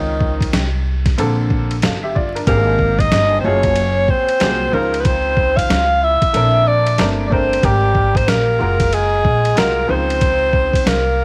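Over vinyl crackle, a clear, up-front alto saxophone with vibrato and scooped notes carries the melody as a veiled, cup-muted trombone sits behind it, a worn, slightly detuned upright piano accompanies on major-ninth chords and a woody pizzicato upright bass with tube saturation holds the low end, before a gritty, pitched-down boom bap kit with a thumpy kick comes in at 0.2 s, giving this cool, smooth jazz-hop fragment at 93 BPM its swung 16th-note feel under light studio reverb.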